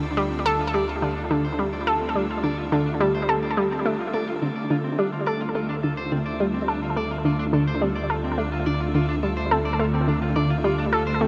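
Ambient, sequencer-driven space music with an expansive, cosmic mood, built on a single sustained Dm7 chord in which an up-front, nasal, detuned analog pluck riff with chorus, delay and shimmer reverb leads over a round, deep analog bass note, while a bright, picked clean electric guitar playing delayed arpeggios and an evolving, morphing wavetable pad with phaser, ensemble chorus and shimmer reverb both fade in across the full 11.3 seconds, all set in a dreamy mix soaked in cathedral reverb.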